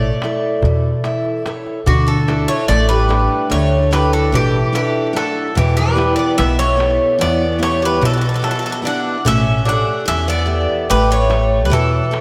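Greek folk in 9/8 at 146 BPM (eighths) and D major, this calm excerpt from a longer piece features a picked, metallic lead bouzouki up front with tape echo, carrying the melody while a second bouzouki with double, partly octave-doubled strings plays a lower line beneath it. A bright, full-bodied dreadnought steel-string guitar provides picked accompaniment, a woody pizzicato upright bass sits up front, and a clay darbuka played with soft hands adds compressed, saturated percussion from 0.2 s. The whole is soaked in a lush hall reverb for a dreamy feel, moving from A to Dsus2 at 1.9 s, then through Em to A7.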